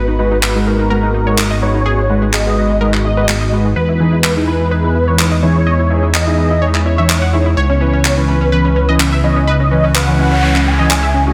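Progressive house at 126 BPM in G# minor, expansive and driving, where a fat, up-front analog bass anchors G#m7, Emaj7 and C#m7 chords under a thick, bold unison lead with vibrato, chorus and delay, an airy breathy pad in the background, a round analog pluck playing delayed arpeggios, soft supersaw stabs entering at 0.2 seconds through tape coloring and a low-pass filter, overdriven electronic handclaps from 0.4 seconds, and a noise sweep arriving at 9.9 seconds, all under light reverb in a dense, heavily limited modern master.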